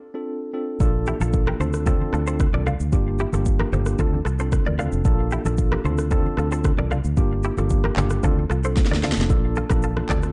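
Dark, dry production frames this sultry, mellow afrobeats excerpt at 113 BPM in D minor: a tine electric piano with medium tremolo opens alone over Dm7, then a deep-kicked, sharp-snared afro-pop drum kit with handclaps, rim click and shaker arrives at 0.8 s alongside a round, foam-muted fingered electric bass up front, and at 1.1 s a twangy, compressed clean electric guitar riff with subtle chorus and digital delay joins very quiet, soft-handed congas as the harmony cycles through Dm7, Bbmaj7 and Gm7 toward a drum fill at 8.8 s.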